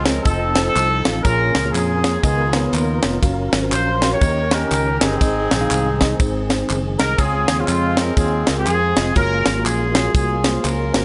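Uptempo gospel at 121 BPM in Db major, this jubilant, uplifting excerpt swings its eighth notes over a 4/4 groove, with chords moving from F7 through Bbm7, Db13 and Gbmaj7 to Dbmaj7 before returning to Gbmaj7. A mellow horn section carries the melody, playing tight pop-style lines with vibrato that sound roomy and set at a distance, though they sit up front in the balance. Underneath, a mellow tine electric piano comps cleanly through its built-in speakers, while a tonewheel organ holds very quiet sustained chords with light overdrive, key click, chorus vibrato and a slow rotary speaker. A round, direct fingered electric bass sits up front, and at 0.1 seconds a dry, airy, polished funk drum kit enters with a tight kick, high-tuned snare and ride cymbal, together with a close tube shaker and group handclaps. Light reverb surrounds the whole, with the top end gently rolled off.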